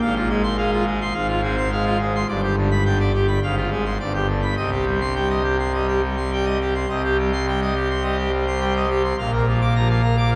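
A full pipe organ opens on an F minor chord over A-flat, its mixtures giving the sound a brilliant, up-front edge in this majestic, dramatic classical toccata. Playing solo in C minor at 105 BPM in a straight 4/4, the organ spans from a deep G1 to a high D6, with a romantic voicing. The harmony moves between that F minor chord and G before settling on C minor at 4.6 seconds, then shifts to B-flat near the close. A new section begins at 6.9 seconds, and the fragment is cut from a longer piece, ending at 10.4 seconds. A wet cathedral reverb with a 4.3-second decay surrounds the instrument, giving it a grand, resonant space.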